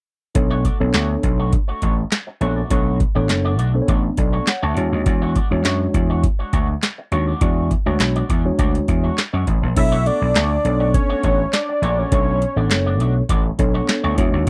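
A booming analog drum machine sets a straight four-beat dance groove for this late-night stretch of early-eighties boogie funk. Its deep kick, crisp snare, metallic hi-hat, handclaps and crash cymbal are overdriven and placed up front, with a short room on the snare, claps and hats. A punchy, amped vintage slap bass joins at 0.4 s and sits just as prominently. A mellow, clean tine electric piano holds the harmony, moving from Bm9 to E13. Behind it, a bright, twangy electric guitar plays a picked riff through an envelope filter, its compressed, scooped tone touched by subtle chorus and mixed lower than the other parts. At 9.8 s the chords return to Bm9 and a fat analog lead takes the melody until 13.2 s, a detuned sawtooth and square-wave sound with a sub octave, vibrato, chorus and tape echo that gives it a dark, warbling vintage character. The whole cut has the dry, close feel of a 1970s-style studio recording with little reverb, and it is taken from a longer piece.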